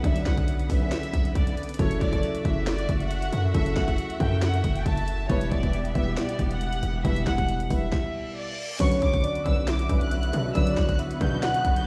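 Menacing and dark, this half-time trap excerpt pairs a soft, floating violin section melody treated with plate reverb and delay with a mellow, boxy grand piano, lush bowed strings, a heavy, saturated 808 bass and an overdriven drum kit with a hard-clipped kick, sharp snare and bright hats, all sounding as if played over a big sound system in a bare stone room, until a stop at 7.9 s and an electronic reverse cymbal at 8.1 s lead to 8.8 s, where a round, detuned octave-layered synth lead with chorus and a shadowy, close-miked brass ensemble of stabs join in.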